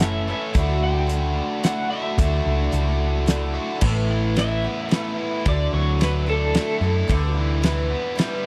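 A dry, close 1970s-style studio sound with small room ambience frames this nostalgic, open-road folk rock and heartland rock excerpt in 3/4, where a damped 70s drum kit with a fat snare and dark cymbals and a round, hollow-body short-scale electric bass sit up front beneath a shimmering, octave-doubled twelve-string acoustic guitar, a biting, double-tracked overdriven guitar riff and a twangy, slightly broken-up melody guitar through a small old amp with tremolo, as a clean electric guitar solo arrives at 3.8 s.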